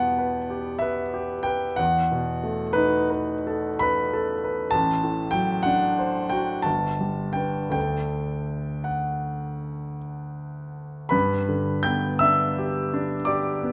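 Heard up close in a moderate recital-hall reverb, a clear concert grand piano with deep bass, long sustain and audible action noise plays this nostalgic, tender romantic nocturne alone in a rubato 9/8 at 50-68 BPM, opening on E minor before settling into G major from 4.7 s and reaching a new section at 11.1 s in this intimate passage cut from a longer piece.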